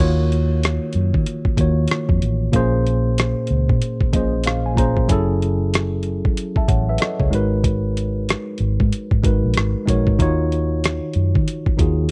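Sultry and smooth, this short neo-soul R&B excerpt moves with a relaxed, swung sixteenth-note feel in 4/4. A mellow tine electric piano carries the accompaniment up front, its worn, slightly out-of-tune tone adding character as it moves through lush minor ninth chords, with a brief fill between 3.8 and 5.1 seconds. Beneath it, a vintage muted fingered electric bass plays throughout, dark and round with a foam-muted, amped quality. The dusty soul sampler-style drum kit enters at 0.3 seconds with hi-hat, rim click and a thumpy kick, sounding gritty, compressed and overdriven, as if re-recorded in a small room. The whole piece has the dry, close feel of a 1970s studio, touched by a subtle digital ambience.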